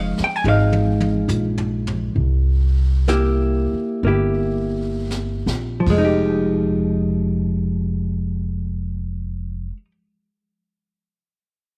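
A dark, clean hollow-body electric guitar sits up front with fingered, compressed chords in this melancholic, smoky jazz ballad fragment, alongside a woody pizzicato upright bass on steel strings, while a quieter brushed drum kit with a high-tuned snare and boomy kick plays fills from 0.4 seconds and 5.1 seconds before stopping at 6.0 seconds, as the swung pulse gradually slows and the harmony moves from Fm7 through C7 to Fm9 in a small, intimate room.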